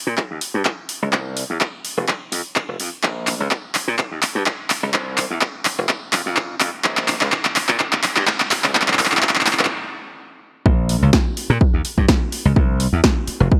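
A bright, 1980s-style digital production with moderate plate reverb frames this groovy, funky filtered disco house excerpt: a direct, up-front slap bass pumps against the sidechain through its filters, an overdriven analog kick drives the beat, and a punchy drum machine of handclaps, hi-hat, rim click and snare, with a short room on snare, clap and hats, builds through a drum fill until a stop at 9.7 seconds gives way to the drop at 10.7 seconds.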